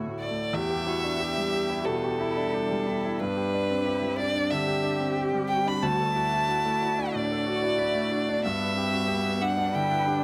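A single violin carries the melody up front, entering at 0.2 seconds with an airy, intense bowed tone and vibrato shared by the cello below it. This is a tender, intimate stretch of neoclassical piano and strings in G major, moving at 91 BPM in 4/4 with a free, rubato feel. It is cut from a longer piece. A brilliant grand piano supplies the accompaniment close to the listener, its polished, long-sustaining notes joined by audible action noise. Beneath them, a solo cello plays a focused second line in the background, and a very quiet wavetable pad holds sustained chords that evolve and morph, with a slow attack and chorus. The harmony passes through Dadd9, E minor, G and D before returning to G, captured by close, detailed microphones in a light reverb.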